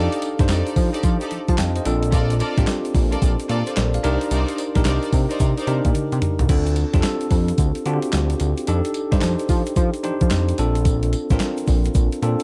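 A new jack swing R&B clip, confident and punchy, set in 4/4 with swung sixteenths. A crisp, sampler-style 8-bit drum machine sits up front, its thumpy kick, medium-tuned snare, hi-hat, handclaps, tambourine, toms and crash cymbal pushed through overdrive and re-recorded in a small room, with a drum fill from 5.9 to 6.5 seconds closing the first pass. A fat, nasal analog bass built from detuned sawtooth and square waves, with a filter pluck and fast attack, holds the low end, while a bell-like, clean tine electric piano carries the chords through F13, Bbmaj7, Cm9 and Dm7. An intense, lush bowed string section adds vibrato-rich stabs with tape echo until 5.7 seconds, and a grainy acoustic tube shaker sits far back in the mix. The production is dark overall, wrapped in digital ambience with a faint mains hum, and the clip is cut from a longer piece.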